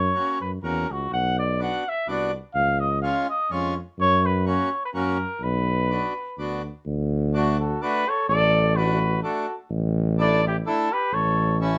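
A warm, lightly vibrato flugelhorn carries the melody up front over a mellow, smooth-topped tuba bass and reedy, airy accordion in this bouncy, jolly alpine folk dance excerpt, swinging in 3/4 at 126 BPM under light reverb, moving from B minor to D major at 6.9 s, shortly before a dark, raspy, growling trumpet joins with a distant, jazz-style second line at 7.4 s.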